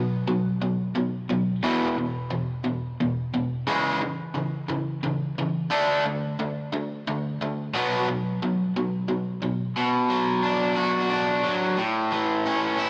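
A crunchy overdriven electric guitar plays alone from the first second, carrying this short rock fragment cut from a longer piece. It moves in a slow 6/8 at 59 beats per minute, counted in dotted quarters with a straight feel, and the mood is wistful and jangly. The picked, double-tracked guitar sits up front with a bright edge, ranging from E2 to F#4 as it steps through B5, E5, C#m and D5 before returning to B5. At 9.8 s the passage shifts into a new section, settling on Bm and then moving to A at 11.8 s before the fragment ends at 12.9 s. Light reverb and a digital ambience surround the playing, while a worn, warbling cassette-tape quality adds pitch drift and lossy compression artefacts that make it sound aged.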